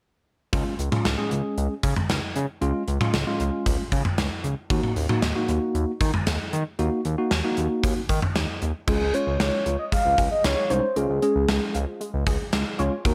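A gated 80s drum kit sits up front with tight kick, medium-tuned snare, bright cymbals and toms through a gated reverb, driving this bright, nostalgic synth-pop clip from a longer piece. Beneath it a smooth, detuned synth bass and a clean tine electric piano played through built-in speakers carry the accompaniment in a small, lightly reverberant room. At 8.9 seconds a round, vintage horn-like synth lead with vibrato takes the melody, joined by lo-fi arpeggios from a warbly, dusty pluck set in the background, both with chorus.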